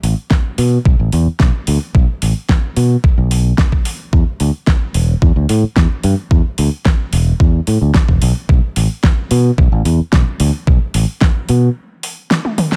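Cosmic and sleek, this nu-disco excerpt moves at 110 BPM in a straight 4/4 in B minor, tuned to A4 = 436 Hz. An up-front fingered electric bass, warm and both direct and amped, roams its low register beneath a thumpy, overdriven electronic kick that comes in at 0.3 seconds, sampler-style and re-recorded in a large room, while a layered, produced pop drum kit adds a fat snare, metallic hi-hats and toms with a tape-warm character. The groove gives way to a break at 11.8 seconds, capped by a drum fill at 12.4 seconds, all set in a digital ambience.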